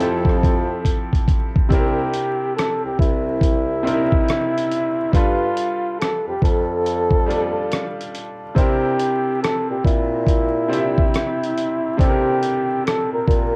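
From the very first moment, a breathy, whispered flugelhorn carries the melody up front with soft attacks and jazz-style vibrato, joined by a bright, woody upright piano whose action noise can be heard in its intimate accompaniment. This dreamy lo-fi hip hop cut moves at 70 BPM in 4/4 with a lazy swing on the sixteenths, its tuning sitting just under standard pitch. A mellow bassoon plays the bass line in a classical style, close-miked with a light vibrato. The gritty, sampler-style drum kit sits up front with a thumpy kick, hi-hat and rim click, compressed and re-recorded in a small room, and it plays a fill from 0.8 to 1.7 seconds before the harmony shifts from Fmaj7 to a C7, G7, C7 progression. The flugelhorn and piano are dulled by a low-pass filter and cassette tape wear, while the drums carry a vintage 12-bit crunch, all within a home-cassette sound with vinyl crackle and light reverb.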